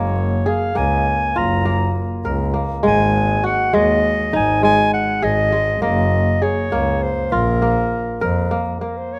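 A rough home-demo mix with light studio reverb frames this restless, urgent piece of contemporary chamber music in 5/8 at 201 BPM counted in eighths, where a clear, classical-style solo clarinet carries the melody over mellow, ringing, fingerpicked kora arpeggios and a single bowed double bass with a nasal gut-string tone, all three up front as the harmony moves from Gbmaj7 toward Bb5 before the bass stops at 8.7 seconds.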